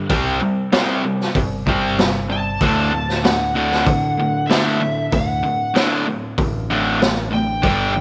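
Sunny and swaggering, this classic rock excerpt in D mixolydian struts at 96 BPM in a straight 4/4. An up-front, bright cranked stack guitar and a background garage guitar, both overdriven and picked, riff together over a growly, punchy fingered electric bass and a gritty, saturated small-room drum kit with a boomy kick and a rolled-off top. At 2.3 s a lead guitar through a small cranked amp, overdriven with slapback echo, enters up front with a high melody over a change from C5 to D, set in a moderate spring reverb.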